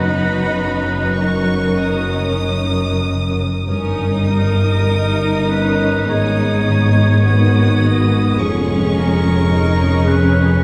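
A rubato pulse in 4/4, hovering around 47-54 BPM, carries this slow, serene romantic movement for symphony orchestra, cut from a longer piece and moving through chords such as B/F#, D#7/G and G#m. A rich, expressive violin section sings the high melody with vibrato, while a second, focused violin section with a smooth top and a distant, softly attacked oboe trace second lines. A clear, lush viola section supplies accompaniment, a ringing, thumb-plucked concert harp spins arpeggios in the background, and a double bass section and a warm cello section hold the bass beneath, with the recording set in a wet cathedral reverb that lasts 5.2 seconds and gives it a church or concert-hall glow.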